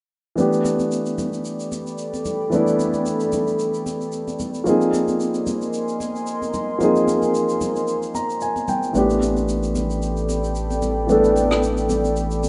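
Deep and hypnotic, this amapiano cut from a longer piece opens on a dark, mellow baby grand piano with audible action noise, playing up front from 0.4 seconds over swung shaker and rim click with brushes and bright, high-tuned congas in the background, while a moody, detuned ambient pad with chorus and ring modulation enters at 1.5 seconds, the piano plays a fill at 7.9 seconds, and a round analog bass arrives at 8.9 seconds, all in a rough home demo mix with a lush hall reverb.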